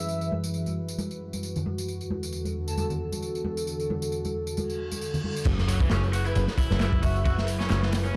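Funky and swaggering, this short breakbeat excerpt opens on a warbling, nostalgic pad of detuned sawtooth and triangle tones, chorused and soaked in its own reverb, pumping as a filter sweep moves across it through the first 5.5 seconds. An airy, dreamy lead floats above in soft, detuned unison with vibrato and portamento, carrying an old-record sound and tape echo, while an overdriven analog drum machine taps out handclaps, hi-hat and tambourine alongside close, ringing congas played with soft hands. A reverse cymbal swells into the drop at 5.5 seconds, paired with a sub drop, and there a crunchy, saturated breakbeat kit arrives up front with a tight kick, medium-tuned snare, dark cymbals and a rolled-off top. With it comes a round, foam-muted picked bass, overdriven and dark, holding a low F#, and a bright, raw garage guitar riff with overdrive and tape echo joins at 5.7 seconds. The chords shift from F#7sus4 to E9sus4 and land on F#9sus4 at the drop, all set in a dark production with light small-room ambience.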